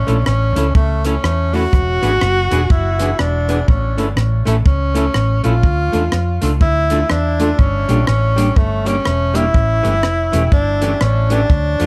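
A clear tenor saxophone carries the melody with light vibrato and tape echo, while a round, punchy hollow-body bass sits up front beneath it in this energetic, driving ska excerpt at 123 BPM, swung on the eighths. From 0.1 s a dark, clean, picked archtop guitar, also touched with tape echo, adds accompaniment, and a compact, dry cocktail kit drives things with hi-hat, rim click and a punchy kick. The chords move through A, E7, back to A, then Dm, Gm and A7, all wrapped in light reverb and a layer of vinyl crackle.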